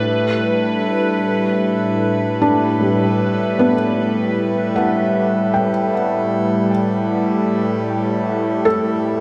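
An evolving, detuned wavetable pad sits up front with chorus and its own reverb, holding sustained chords over a reedy, breathing pedal harmonium drone in this reflective, melancholic ambient excerpt at 77 BPM in 3/4 on Asus2, and a felt-muted upright piano with audible action noise joins at 2.4 seconds with soft dub-echoed arpeggios, all bathed in a long, wet plate reverb.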